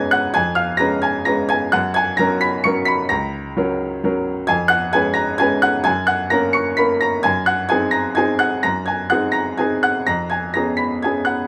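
Classical piano waltz in F# major at 130 BPM, graceful and playful, where a bright, brilliant baby grand plays solo and up front with short sustain across the full 11.5 seconds, its uneven, rubato triple-metre phrasing moving between C#7 and F# harmonies with a turn to G#7 from C#2 up to C#7, caught by close, detailed microphones in light reverb.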